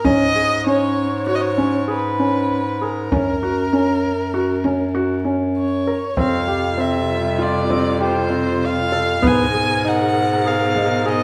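A moderate recital hall reverb surrounds this hopeful, restless piece of contemporary chamber music, which moves at 98 BPM in an uneven 5/4 over chords that shift from Db5/Ab through Gb and Fsus2 to Abmadd9. Up front, a dark, nasal violin carries the melody with vibrato and portamento, while a felt-muted upright piano plays soft, intimate arpeggios and a clear, distant bass clarinet holds the bass line. A deep frame drum adds soft-handed percussion, and at 6.1 seconds a lush symphonic string section enters with smooth-topped sustained chords.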